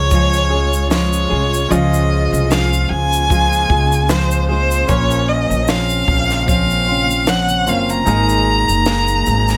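This easy-going, heartfelt acoustic pop excerpt opens with a smooth, bowed solo violin carrying the melody with rich vibrato, over a dark, woody pizzicato upright bass with gut-string thump, both sitting up front. A full-bodied fingerpicked dreadnought steel-string guitar and a clear, polished baby grand piano in the background fill out the accompaniment, while a very quiet granular pad adds cloudy, blurred, evolving sustained chords. A compact, dry cocktail drum kit joins at 0.1 seconds with a punchy kick, a high-tuned snare and shaker, at 75 BPM in 4/4 with a gentle sixteenth-note swing. In Db major, the harmony moves from Db to Bbmadd9 at 4.9 seconds and settles on Absus2 at 8.1 seconds. Light reverb gives the whole arrangement a soft sense of space.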